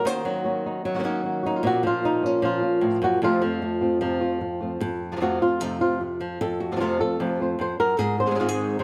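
Fiery and mournful, this short cut from a longer flamenco piece moves in a straight four-beat feel through a dark harmonic turn from Ebm7 to Bbm and onto F, later landing on Ab. Two flamenco guitars fill the whole span, one carrying the melody across a range from F2 up to C5 and the other supplying stabbing chords beneath it. The melodic guitar sits up front with a boxy, thumb-plucked tone, and finger squeaks are audible on its strings. The supporting guitar shares that dark acoustic character, also thumb-plucked, and sits a little lower in the mix. A nylon-string guitar solo runs from 4.8 to 8.8 seconds. A moderate stone-room reverb, lasting about 1.4 seconds, gives the pair a resonant, enclosed sense of space.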